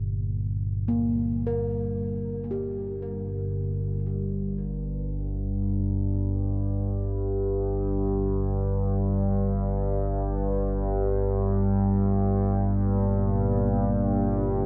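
In free time, this unsettling, cavernous dark ambient drone in G minor (tuned to A4 = 441 Hz) is cut from a longer piece, opening on bronze, close-miked gamelan-type bossed gongs playing delayed arpeggios up front until 8.7 seconds over an evolving, warbling analog drone of sawtooth and pulse waves with chorus that holds throughout, while a deep, detuned analog pad with chorus and phaser slips in behind with sustained chords at 13.4 seconds, all steeped in a huge ambient reverb and the warbly pitch drift of worn old cassette tape as the gongs fade out.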